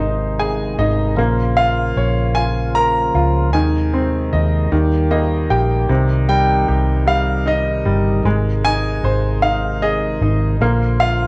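A lilting six-eight sway carries this heartfelt, romantic pop ballad fragment, where a bright, woody upright piano accompanies and drops in fills, a clicky tonewheel organ holds sustained chords through a slow rotary speaker, a dark, foam-muted electric bass sits round and up front, and from 1.6 seconds a clear, smooth concert grand sings the melody, all set in a small room with moderate spring reverb.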